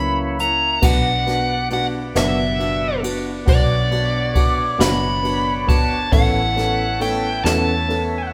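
An up-front, dark overdriven lead guitar carries the melody through this aching, melancholic six-eight pop ballad in B minor, moving slowly at 45 BPM over a mellow, woody upright piano, a tonewheel organ with key click and slow rotary speaker holding sustained chords, and a full-bodied fingerpicked steel-string acoustic guitar with finger squeak tucked in the background. A foam-muted, round and punchy fingered electric bass anchors the low end, while a jazz kit played with brushes, boomy kick and dark cymbals enters at 0.4 seconds. Cut from a longer piece and captured as a band playing live in one room with wet studio reverb, the harmony moves from Gb7 to Bm at 0.8 seconds and to Aadd9 at 6.1 seconds.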